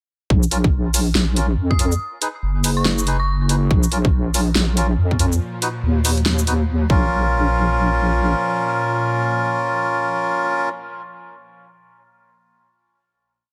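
Cavernous and meditative, this complete deep dubstep piece in Bb minor moves at 141 BPM with a swung, half-time feel, running from a drop into a final hit at 7.1 seconds. A punchy, tape-warm electronic kick and a dubstep kit with a huge snare, metallic hats and shaker sit up front, laying down the half-time beat. Alongside them, a deep, soft wobble bass blends square and sine tones, saturated and thickened with chorus, shaping modulated phrases whose wobble speed keeps changing. A reedy, nasal melodica, boxy as if in a small room, punctuates the off-beats with close-voiced chord stabs trailed by dub echo, while a dark, inharmonic detuned synth bell adds eerie short phrases in the background. From 5.0 seconds a bright, tense, string-like drone enters with slow attack, vibrato, phaser and its own reverb, holding sustained chords through to the end.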